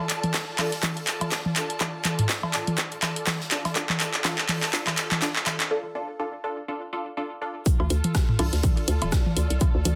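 Set in a moderate small room, this clinical, hypnotic minimal techno excerpt at 123 BPM in D minor carries a punchy, up-front electronic kick, tape-warm house handclaps, hi-hat and rim clicks, analog electronic toms and cowbell with tape echo, a very quiet gated 80s kit of airy hi-hat, shaker and snare, muted, detuned dub chord stabs with phaser, a lush bowed string section under sidechain pumping, and a pulsing triangle texture in the background that stops at 5.7 seconds for a break before the drop at 7.7 seconds brings in a hollow, bouncy FM bass.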